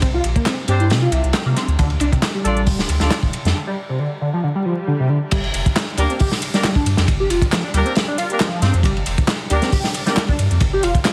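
A swung 136 BPM breakbeat groove in 4/4 drives this swaggering, funky piece in G minor, with a crunchy, up-front acoustic kit of tight kick, medium-tuned snare and dark cymbals layered over a quieter electronic garage kit of handclaps and metallic hats, while a deep, thick sub bass holds the low end. A screaming, guitar-like overdriven synth lead carries the riff through ensemble chorus and tape echo, with a filter sweep across the opening section. A clear, vintage horn section punctuates with stabs touched by tape echo, and an electronic swell rises at the tail of the break before the drop lands at 5.3 seconds. The whole mix has light small-room ambience, a heavily compressed radio sound and vinyl crackle.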